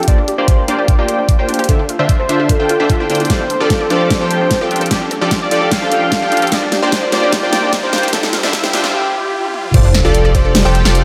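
A punchy, detuned supersaw stab and a thick, saturated sub bass open this euphoric, playful half-time future bass clip alongside a layered dubstep kit with a huge snare and an up-front knocking kick, while a velvety chorused lead carries the melody over quiet lush plucked arpeggios and a faint riser through a filter-swept build-up with drum fills, until the drop lands with an impact at 9.7 seconds, bringing in a second, bright pluck in the background, all bathed in dreamy hall reverb.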